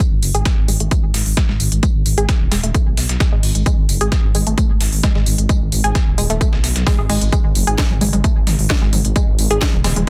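An overdriven, heavy electronic kick leads this intense, industrial slice of driving peak-time techno, joined by a techno drum kit with a cracking snare, smooth hats and toms, a gritty, tape-coloured soul sampler-style kit of hi-hat, snare and tambourine, a deep, rumbling detuned saw bass pumping to the sidechain, and a round, nasal analog pluck riff carried by chorus, phaser and tape echo, all within a dry, dense and heavily limited mix.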